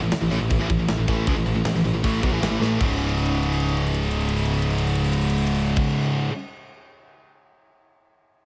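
Aggressive and heavy, this short heavy metal excerpt drives forward in a straight 4/4 feel. Three picked electric guitars share the riff from the start: an overdriven guitar with a bright edge, a scooped high-gain guitar sitting in the background, and a thick, double-tracked fuzz guitar also tucked behind. A growly, direct electric bass sits up front with a bright, modern attack, holding down the low end until 5.8 seconds. The acoustic drum kit sounds big-roomed and gritty, with a tight kick, a medium-tuned snare, and crash and ride cymbals, and it carries on alone briefly after the guitars stop at 6.3 seconds. The riff moves from an A5 power chord to a C#5 at 2.8 seconds, with a drum fill at 2.6 seconds marking the change and a longer fill running from 3.0 to 5.8 seconds.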